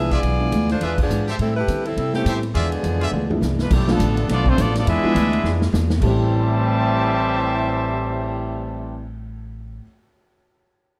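Big band swing in A minor at a brisk 208 BPM, this dramatic, sultry excerpt opens with a clear saxophone section carrying the melody over a woody, thumpy upright bass, a hushed, dark hollow-body electric guitar, an intimate baby grand piano with audible action noise, and a swinging drum kit with a punchy kick, while a bright trumpet section adds stabs and the band hits an accent at 1.0 seconds. A smooth-topped trombone section enters at 2.5 seconds with a second line, and at 3.6 seconds a tight trumpet section with light vibrato takes over the melody as the harmony moves through E7b9, Am7 and Bm7b5. Drum fills mark the changes between sections, and the close, detailed sound sits in light reverb, with the drums ringing in a big, natural room.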